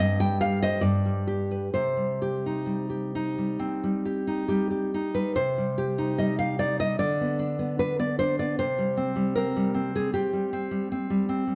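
A dark production sets a single nylon-string guitar up front in a moderate recital hall, where a 1.5-second tail of reverb gives each note room to bloom and fade. This is a romantic piece for solo classical guitar, intimate and passionate in mood, played in a flexible rubato that lets the phrases breathe. The fingerpicked tone is full-bodied and deep, reaching from the low bass strings up to the high treble, and a finger squeak adds a close, human detail. The music moves through a first idea before turning to a new passage at 5.4 seconds, where the harmony shifts to B minor over D at 7.0 seconds before arriving on a bare C fifth near 8.6 seconds. The recording is a short portion cut from a longer performance.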